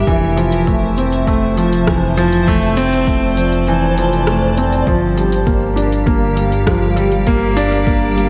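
An up-front, warm grand piano riff carries this cinematic, hypnotic piece of piano-and-strings electronica at 100 BPM, treated with analog delay as the harmony moves from Fmaj7 to Gm7 at 4.9 seconds. Beneath it, a cloudy granular pad with subtle chorus sustains evolving, blurred chords, while a dark, rumbling detuned saw bass pumps along with it under sidechain. An overdriven electronic kick and a deep house kit of metallic hi-hats and rim clicks drive the groove, with the kick dropping out from 3.7 to 4.9 seconds, all set in a dreamy hall reverb in this brief cut from a longer piece.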